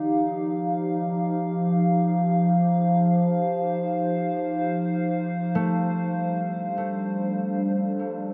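Weightless and luminous, this short ambient passage, cut from a longer piece, drifts in free time. A warbly, tape-like pad holds sustained chords from the start, its detuned, nostalgic lo-fi tone sitting up front with slow attacks, long releases, chorus, phaser and its own built-in reverb. At 5.6 seconds a concert harp joins with fingerpicked arpeggios, its acoustic, ringing notes set further back and trailed by delay. The whole mix is soaked in a huge ambient reverb that gives it a dreamy, suspended quality. The chords move from F5 to G5 at 6.0 seconds before the passage ends at 8.3 seconds.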